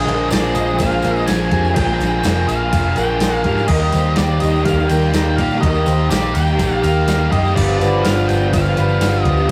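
A straight 4/4 pulse from a clean, tape-tinged 12-bit drum machine, with a thumpy kick, medium-tuned snare, ride and crash, drives this hazy, dreamy shoegaze and dream pop rock excerpt, joined by a jingly tambourine in the background and a dark, round, foam-muted picked bass up front. A biting overdriven guitar riff leads the mix, while a twangy, compressed guitar through a small old amp plays its own riff behind it, and a boxy, shimmering fingerpicked twelve-string acoustic adds octave-doubled arpeggios. Over the top, a distorted octave-fuzz lead guitar carries the melody as the chords move from Bb7(no3) to Eb at 3.7 seconds and G7 at 7.6 seconds, the whole take sitting in wet studio reverb with the rough feel of a rehearsal-room recording.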